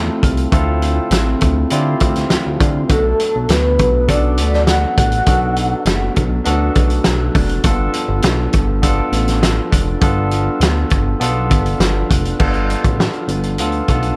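Indie pop with a bedroom-pop haze, this lonely, wistful clip moves at 101 BPM in a straight 4/4, cut from a longer piece and set in light reverb. A barky tine electric piano with a cassette-tape tint plays accompaniment alongside an electric guitar through a small old amp, which sits in the background, dark and slightly broken-up behind lush chorus and warbly pitch drift. A glossy, retro chorused synth bass with a plucky, fast attack carries the low end, while a loose indie drum kit enters at 0.2 seconds, up front with a fat snare, punchy kick, dark cymbals and a gritty, saturated edge. A soft octave-layered synth lead, round and full with tremolo, vibrato, lush chorus and slapback echo, sings the melody only from 2.9 to 6.1 seconds. The harmony drifts from Dm7 to Bm7 and then G7, with a brief new section arriving at 12.4 seconds.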